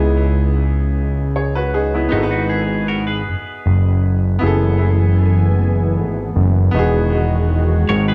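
R&B in 6/8 at a slow 52 BPM, this short, intimate fragment rests on a fat, detuned analog bass that sits up front from the start, while a bright, slightly worn grand piano plays accompanying chords through tape echo. A clean, twangy electric guitar adds a second line with lush chorus from 2.1 s to 4.2 s, returning briefly at the very end, and at 4.4 s a mellow, detuned pad in the background brings sustained chords as the harmony moves from C#m9 and G#m7 to F#m11 and Emaj9. The mix is echo-heavy with only a small room around it.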